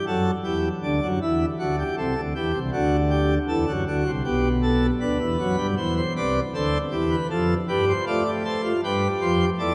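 A full, brilliant pipe organ plenum with bright mixtures and a romantic voicing sits up front, playing alone through this brief passage of a stately, joyful baroque-style three-part fugue in C major. At 79 BPM in a straight 4/4, the harmony opens on G5 and settles on C, then moves through G/B, C and F to G7, with the voices ranging from B1 to D5. A long, wet cathedral reverb surrounds the organ.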